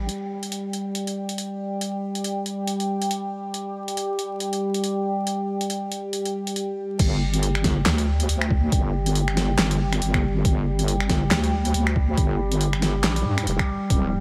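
A half-time, swung groove at 139 BPM drives this brooding, meditative deep dubstep excerpt, where an up-front detuned sawtooth drone with moving overtones, a slow attack, chorus and its own reverb sustains chords from the start while a tape-warm, layered deep house kit of fat snare, hi-hat, handclaps, finger snaps and crash runs from 0.1 s, until the drop at 7.0 s lands on a G5 chord as a heavy, saturated square-wave wobble bass returns with a muffled, overdriven, pitched-down kick, all over vinyl crackle and a light reverb.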